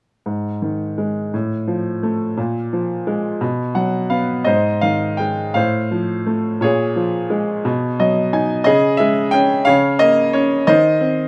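Classical solo piano in Ab major, calm and peaceful, as a bright baby grand with a brilliant, open, up-front tone sings a lyrical line in a rubato 6/8 at roughly 55-60 BPM, adding brief fills around 3.4 and 7.7 seconds, captured close and in detail with light reverb in this short cut from a longer piece.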